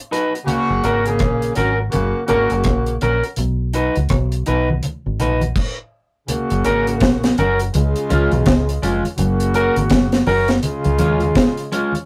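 A clean, picked electric guitar and a dry drum kit with a high-tuned snare and tight kick open this uplifting, laid-back roots reggae excerpt in F# major at 83 BPM, swung on the sixteenths. They are soon joined by a mellow, loosely played horn section with light vibrato, ringing low-tuned congas in the background, and a dark, round, foam-muted fingered bass up front. The band cuts out in a stop from 5.6 to 6.3 seconds before a second section resumes over F# and C# chords, all in a rough, tube-saturated rehearsal-room sound with a short booth ambience.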